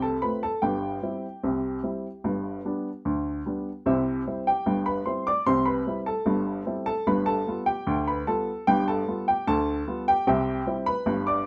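Ragtime piano in C major at 75 BPM in a straight 2/4, lively and jaunty, this short excerpt features a solo upright piano with a clear, woody tone and short sustain, sitting up front and spanning G1 to D6. A brief phrase moving from F through C/G to G gives way at 3.9 seconds to a repeated section that travels from C to G7 and resolves back to C at 10.3 seconds. A small room adds moderate reverb around the playing.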